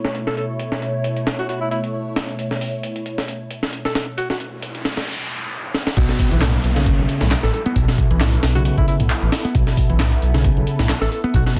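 A funky, gritty breakbeat excerpt at 134 BPM opens on a swirling, phased analog pad holding a B9sus4 chord over a compressed, sampler-style break with a thumpy kick and high-tuned snare, while a mellow, breathy alto saxophone with light vibrato and scooped notes sings through a lo-fi radio filter and digital delay. An electronic noise sweep and downlifter enter at 4.4 seconds to signal the drop at 6.0 seconds, where a deep, rumbling detuned saw bass, a bright picked electric bass riff and an overdriven house kit of layered handclaps and hi-hats join in. The dense, heavily limited master leaves the breakbeat kit and saw bass up front in a light reverb.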